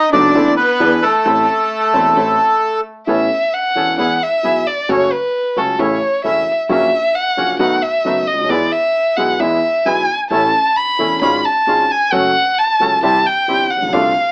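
Tense and passionate, this tango excerpt moves at 133 BPM in 4/4 with a rubato feel. It opens in A harmonic minor, with a reedy, up-front bandoneon carrying the melody until 2.8 seconds. A bowed solo violin, warm and expressive with vibrato, portamento and a soft attack, plays a second line throughout and takes over as soloist at 3.1 seconds, when the music turns to A major. Underneath, a mellow upright piano gives accompaniment, a second bandoneon adds smooth stabs, and a woody pizzicato upright bass stays in the background. The sound carries a moderate club reverb and the character of AM radio.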